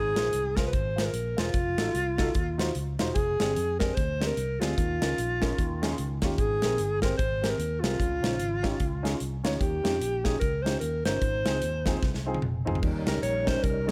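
A mellow alto saxophone opens this uptempo gospel excerpt, carrying the melody up front with a jazz-style vibrato over a dark, short-sustained grand piano and a punchy, amped fingered electric bass, all in Ab major at 149 BPM with a swung 4/4 feel. A tonewheel organ sounds only briefly at the very start, then returns at 12.8 seconds with fat, lightly overdriven sustained chords, a slow rotary speaker, chorus vibrato and key click, sitting in the background. The drum kit enters at 0.2 seconds, an airy, polished acoustic set in a small room with a medium-tuned snare, punchy kick, hi-hat, toms and crash, and it plays a fill from 12.0 seconds. The harmony moves through rich extended chords such as Ab69, F7b9, Bb13/F and Abmaj9, settling on Eb7 at the close. With little reverb, the mix feels close and direct, and the mood is reverent yet jubilant.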